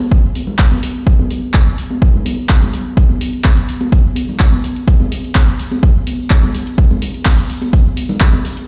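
A straight 4/4 groove drives this nostalgic, funky house fragment, cut from a longer piece, where an overdriven, punchy analog kick sits up front beneath overdriven drum-machine handclaps and sidechain-pumped hi-hats, while bright, distant tambourine and congas sit in a large room behind a low-pass filter and their own sidechain pumping, a filter sweep runs across the drums throughout, and the whole sounds as if played on a big sound system in a bare room.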